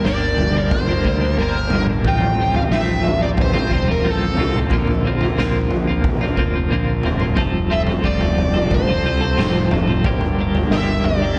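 Psychedelic rock at 90 BPM in a straight 4/4, this hypnotic, dark excerpt cycles through Gm, Fadd9/A, Bbadd9 and Fadd9 before returning to Gm at 10.0 seconds. A bright, twangy twelve-string electric guitar plays an up-front, compressed riff with tremolo, while a bluesy lead guitar carries the melody with a dark, distorted tone through wah and tape echo, and a round, fuzzy fingered bass sits in the background beneath a raw garage kit with a punchy kick, medium-tuned snare and toms. The dreamy mix is soaked in plate and small-room reverb, giving the drums a stone-room ambience with a rolled-off top.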